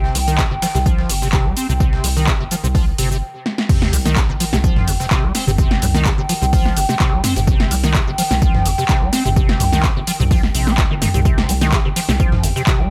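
A light reverb and digital ambience frame this raw, gritty acid house excerpt at 127 BPM in a straight 4/4, set in C minor pentatonic and tuned to A4 = 437 Hz. A squelchy, resonant acid bass riff with a filter sweep, tube saturation, analog chorus and tape echo runs throughout over a round, deep, dark analog bass. Both basses pump with the sidechain, as does a warbling, nostalgic tape-like pad that holds lo-fi, detuned chords through chorus and built-in reverb. Up front sit an overdriven electronic kick and a punchy analog drum machine with crash, handclaps, hi-hat, shaker, snare and toms, its snare, clap and hats placed in a short room. Underneath, a very quiet sampler-style breakbeat kit, compressed and pitched up, adds hi-hat, snare and tambourine. The groove stops briefly at 3.2 seconds and a drum fill lands before the drop arrives at 3.7 seconds, its impact marked by a faint electronic sub drop.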